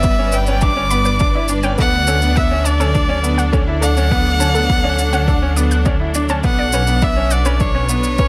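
Piano and strings electronica at 103 BPM in 4/4, this intimate, hypnotic excerpt moves through G, D and Bmadd9 as an up-front, nasal violin carries the melody with delay over a lush, bowed string section and a clear baby grand piano riff whose action noise is audible. Beneath them, a dark, detuned saw bass rumbles up front with sidechain pumping, shared by the strings and a warbling, lo-fi pluck that spins chorused, delayed arpeggios in the background. An overdriven electronic kick and shaker drive the groove, all set in light reverb and studio ambience.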